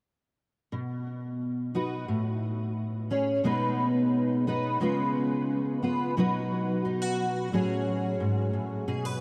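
Soaked in a huge, dreamy reverb with a long ambient tail, this short folk fragment sets a single full-bodied steel-string acoustic guitar up front, its fingerpicked notes touched by analog chorus and delay. Playing alone from 0.7 s to 9.2 s, the guitar moves through a nostalgic, gently shifting progression from B through Amaj7, G#m/B and C#7, then returns to B before settling on F#madd9/A. Audible finger squeaks add an intimate, human edge to the hazy atmosphere.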